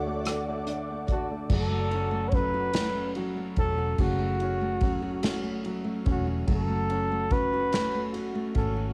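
An aching, melancholic six-eight pop ballad opens mid-phrase on a mellow flugelhorn that carries the melody up front with vibrato, scooped notes and a cassette-tape tint. Beneath it sit a soft, felt-muted upright piano with audible action noise, fingerpicked steel-string acoustic guitar arpeggios with finger squeak, a dark, round, foam-muted electric bass, and an ethereal, detuned pad with ensemble chorus and reverb that stops at 1.5 seconds. The piano adds a fill from 0.3 seconds as an unplugged drum kit played with bundle sticks enters with a punchy kick, crash, hi-hat, ride, rim click and snare in a small room, while the harmony moves from D to F# minor and finally to F# minor add eleven at 6.5 seconds, inside a homespun studio ambience.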